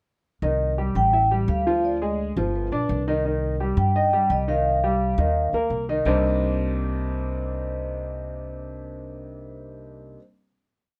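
A sophisticated, driving jazz piece in C minor moves at a brisk 171 BPM in a straight 4/4, tuned slightly below standard pitch. A warm grand piano and an upright bass enter together at 0.4 seconds, the piano up front with a smooth, vintage tone as it plays a montuno in octaves, while the woody, thumpy pizzicato bass on steel strings drives a tumbao line that anticipates the chords. At 1.0 seconds a vibraphone played with soft mallets takes the melody, its metallic, ringing sound mellowed and band-limited, with a slow motor vibrato shaping motif-based phrases built like sentences. The harmony passes from Cm through A5, Ddim and G7 to a Cm9, and after the opening section the piece settles onto a final chord at 6.1 seconds, with all three instruments sounding until 10.2 seconds. A light reverb gives the trio a gentle sense of space.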